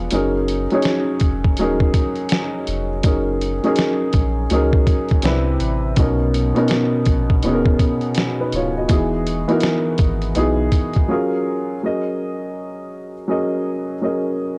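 A dark, woody upright piano with audible action noise and a slightly detuned, long-sustaining tone opens this cosy, nostalgic lo-fi hip hop excerpt in F# major at a swung 82 BPM, over a round, tube-saturated dub sub bass and a muffled, pitched-down sampler drum kit whose thumpy kick sits out the first moment; the bass drops away at 10.7 seconds and the drums at 11.1 seconds, leaving the mellow piano alone on its F#69 and jazzy major-ninth chords until 14.6 seconds, all coloured by gritty cassette grain, faint mains hum and light reverb.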